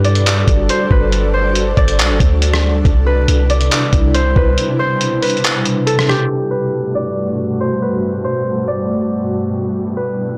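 The recording sounds blown-out and overdriven, darkened by a low-pass filter and set in light digital ambience, a short cut from a longer piece of dreamy, blissful atmospheric cloud-rap in G major. It moves at 139 BPM in 4/4 with a half-time feel, and the harmony rocks between Gmaj7 and Cmaj7. An ethereal, airy pad sustains chords throughout with a slow attack and long release, its detuned unison layers thickened by ensemble chorus, built-in reverb and tremolo. Over it, a fingerpicked Celtic harp carries the acoustic, ringing melody through tape echo. A deep, boomy 808-style bass with transformer saturation anchors the low end until 4.6 seconds. A compressed, muffled lo-fi sampler-style kit of thumpy kick, handclaps, hi-hat and rim click, re-recorded in a large room, plays up front until 6.2 seconds, leaving harp and pad to float alone.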